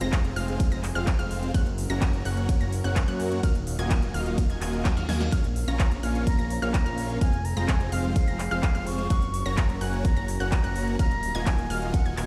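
Powerful and emotional, this excerpt of festival progressive house drives along at 127 BPM in a straight 4/4, cycling through F minor, G-flat and E-flat minor chords. A punchy, tape-tinged electronic kick sits up front with an overdriven big-room kit of crisp hats, snare, ride and handclaps, while a fat, saturated analog bass, a huge detuned supersaw riff and a background pluck arpeggio all pump against the sidechain, and a very quiet, warbling vintage pad holds sustained chords beneath them. After a reverse cymbal and drum fill around 5 seconds, a pure, expressive concert flute enters at 5.8 seconds with a soft attack and vibrato, its melody trailed by digital delay, all heard as if played through a big sound system in a bare stone room.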